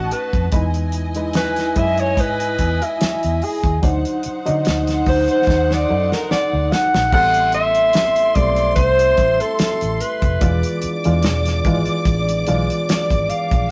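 Lush 1970s-style soul at 73 BPM with a gentle sixteenth-note swing, this bittersweet, cinematic passage from a longer piece is led by an up-front, breathy alto saxophone with a jazz-style subtone and scooped notes, soloing over a bowed, woody string section. A barky, lightly overdriven electric piano with fast tremolo, a round, foam-muted fingered bass and a dry, damped drum kit with a fat snare and tight kick fill out the groove, with a drum fill from 5.5 to 7.1 seconds. At 7.1 seconds a dark French horn section enters in the background with sustained chords, all set in a rough rehearsal-room recording with moderate reverb.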